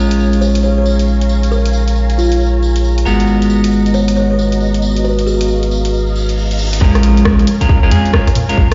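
A skippy two-step garage groove at 136 BPM in 4/4, swung on the sixteenths, sets a late-night mood as a punchy analog drum machine ticks out hi-hat and rim clicks over a tambourine that sounds jingly, compressed and saturated. Up front, a round, deep dub sub bass anchors the low end while a bright, twangy electric guitar at the edge of break-up fires off picked stabs through a digital delay. A buzzing kalimba with a woody, hollow-box tone carries the melody from 0.4 to 5.7 seconds, its ringing thumb plucks echoed by delay, as a silky string machine holds sustained chords, treated with phaser and ensemble chorus, and a warbling, nostalgic tape-like pad sits in the background with chorus and pumping. The harmony moves from A#m7 to G#m9 and back. A reverse cymbal rises into a drop at 6.8 seconds, where an impact lands and a tight, layered electronic kick drum enters as the pad and tambourine stop. 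The whole mix carries a light digital ambience and stone room reverb, with a dark top end that lends this cut from a longer piece a muffled, sound-system-in-a-bare-room character.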